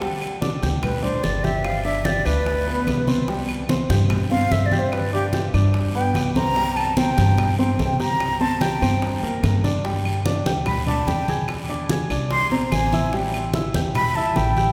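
A straight 4/4 groove of low-tuned congas with damped, thick skins, round hard-hand bongos in the background, raspy guiro and very quiet, dry claves drives this danceable, sophisticated Afro-Cuban jazz, cut from a longer piece, with a drum fill at 6.2 s. Pizzicato upright bass with steel strings enters at 0.6 s beneath warm grand piano accompaniment. From 0.8 s a breathy, mellow silver concert flute carries the solo with vibrato, a crisp attack and an unsteady tone, all set in a wet church reverb.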